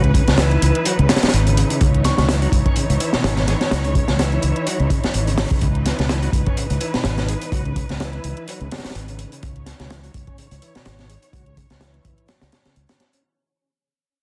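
A muted studio string section, a bright tonewheel organ, a fingered electric bass and an overdriven electronic hi-hat open this funky, swaggering breakbeat excerpt in C# minor, and a crunchy breakbeat drum kit joins at 0.1 seconds. The tempo sits at 126 BPM in 4/4 with a 55% swing on sixteenths, over a C#m9 chord. Up front, the acoustic kit sounds dark and saturated, with a punchy kick, a high-tuned snare and a rolled-off top, while the round, tube-saturated bass drops out at 12.8 seconds. Close and veiled, the bowed strings hold sustained chords with vibrato, 12-bit sampler grit and sidechain pumping. In the background, the shouting organ riff spins through a fast rotary speaker with overdrive, 12-bit grit, low-pass filtering, delay and a filter sweep that runs the length of the clip. A crystalline FM bell sounds a single C#6 note at 2.0 seconds, dressed in chorus, AM radio tone and digital delay, and light small-room reverb, vinyl crackle and a dense, heavily limited master frame the clip as it fades out.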